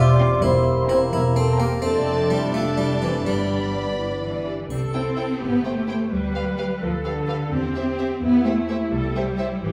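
A lilting 6/8 pulse at 85 dotted-quarter beats per minute carries this playful, whimsical film cue in C major, its mood mischievous and magical. A round, dry harpsichord leads the melody in the opening passage, shadowed by second lines from a dark cor anglais, an airy flute section and a mellow clarinet, while a soft-edged bassoon adds accompaniment and a mellow French horn section holds sustained chords that sit prominently in the blend. Beneath them a clear, lush cello section and a rich, expressive double bass section supply the bass throughout, joined from 0.2 seconds by a focused violin section on a high melody, a woody, shadowy second violin line and a smooth, even viola accompaniment, all bowed with vibrato and the violins kept in the background. The winds and harpsichord fall away by about 4.7 seconds, when a faint, dry triangle marks the start of a second passage carried by the strings, moving from G7/D through C/E to settle on C. 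A wet recital-hall reverb gives the whole cut, taken from a longer piece, a spacious concert-hall glow.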